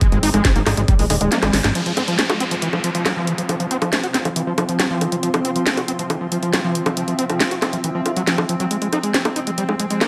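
A straight 4/4 pulse opens this hypnotic, intense psychedelic trance passage, with a knocking electronic kick that drops away after 1.0 seconds, a punchy, funky analog bass pluck, and an up-front drum kit of cracking snare, bright hi-hats and bongos. A squelchy, screaming acid riff with distortion, chorus and digital delay carries a filter sweep and pumps against the beat, joined by a tempo-synced gated texture of sustained detuned chords and a cloudy, evolving granular pad in the background. An electronic downlifter falls in at 1.8 seconds, and a very quiet metallic wobble bass appears at 10.0 seconds, all within light digital ambience.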